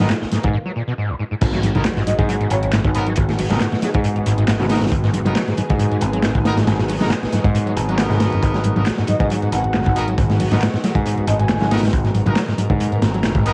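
Recorded at home on cassette with a touch of reverb, this swaggering, gritty breakbeat cut sits on a saturated, up-front acoustic breakbeat kit with dark cymbals and a punchy kick, backed by an analog drum machine's handclaps and hi-hat, faint vintage congas and a growly, overdriven picked electric bass. A squelchy, distorted sawtooth acid riff with resonant filter sweeps screams in the background alongside a lush, detuned unison pad pumping with sidechain, while a tight, jazz-style horn section fires clear stabs roughened by 12-bit sampler grit and tape echo. After a brief break, the drop lands at 1.4 s with a distant electronic impact, and a breathy, warbling flute-like synth lead with vibrato and old-record colour floats in at 2.1 s and again at 9.1 s.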